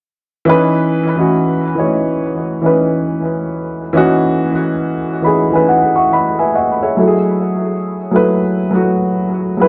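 Drenched in a wet spring reverb and a small room ambience, this echo-heavy recording has a hazy, close feel. It is a short cut from a longer hip hop piece, moving at a slow 69 BPM in 4/4 with a 16th-note swing, and its mood is nostalgic and melancholic in C# minor. A dark upright piano carries the accompaniment from 0.5 seconds, sitting up front with a woody, vintage character, its tone softened by a low-pass filter and trailed by tape echo. The harmony rests on C#m9 before shifting to F#m9 at 7.0 seconds. A piano fill from 4.8 seconds adds a touch of movement within the mellow, smoky atmosphere.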